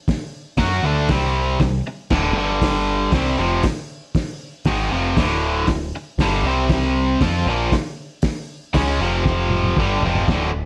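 A biting, overdriven electric guitar, bright and double-tracked, drives this raw, swaggering garage rock excerpt with a picked riff moving through power chords and a darker Bbm9. Beneath it, a growling overdriven bass adds grit, while a cloth-damped, thuddy drum kit with a fat snare, tight kick and muffled cymbals sits up front with a lo-fi, small-room character. The groove is straight in 4/4 under a moderate studio reverb, and a drum fill arrives at 9.3 seconds just before the cut.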